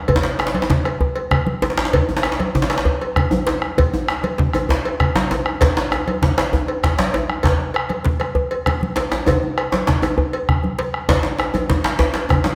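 A djembe fitted with metal rattles stands up front in this short cut from a longer West African traditional drum ensemble piece, its medium-tuned head sounding distant, as if caught in a large room. Set in 12/8 with a straight feel at 131 BPM counted in dotted quarters, the music feels earthy and powerful from its first moments. Alongside it, a round bombo brings a live-room character, while close, damped congas add a bright, thin-skinned tone at medium tuning. A second djembe sits in the background, tight and cracking yet close and dry, played with soft hands. A metallic cowbell, compressed and saturated, joins the texture, and the five parts play together from roughly 0.1 seconds to 12.6 seconds inside a reverberant recital-hall space.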